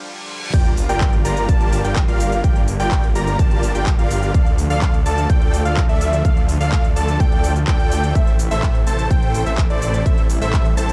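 In this euphoric, emotional festival progressive house excerpt at 126 BPM, a lush, chorused pad sits in the background as an electronic riser, reverse cymbal and sub drop open a brief break before the drop lands at 0.5 seconds, bringing a punchy, up-front electronic kick, a crisp-hatted dance kit of cabasa, crash, handclaps and hi-hat in studio reverb, a menacing, saturated detuned saw bass, huge supersaw chord riffs with dub echo, and a bold, wave-folded unison lead playing arpeggios in a high register with vintage 12-bit sampler grit and dub echo, the pad, bass, chords and lead all pumping to the sidechain in a dark, high-passed mix that moves through Gm7, Dm and Am.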